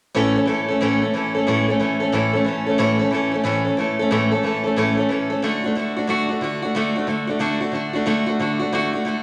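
This rock piece moves at a brisk 182 BPM in 4/4, with a swung eighth-note feel that gives it a bouncy, retro lilt. A lone picked steel-string acoustic guitar carries everything here, sounding bright and up front, with a crisp concert-style character. Playing solo from 0.1 to 9.2 seconds, it ranges from A2 up to A4 and sits in A major, moving from an A chord to D at 5.4 seconds. The guitar is bathed in a lush large-studio reverb that lends a roomy glow to the upbeat mood. This short cut is taken from a longer piece, capturing a single cheerful passage.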